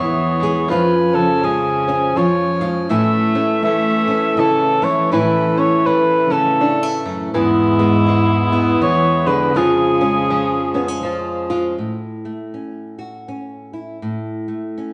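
A lilting, swung waltz at 81 BPM in A major opens this warm, pastoral acoustic folk excerpt from a longer piece: a mellow, smooth-topped cor anglais sings the classical-style solo melody up front with vibrato, a distant, bowed gut-string cello adds a nasal second line in period style, a bright, fingerpicked nylon-string guitar accompanies up front, a breathing, reedy hand-pumped harmonium holds sustained chords in the background, and a twangy, plunky open-back banjo plays percussive arpeggios behind them, all captured as a band playing live in a stone room with a wet reverb, until the guitar carries on alone from 11.9 s to the close at 14.9 s.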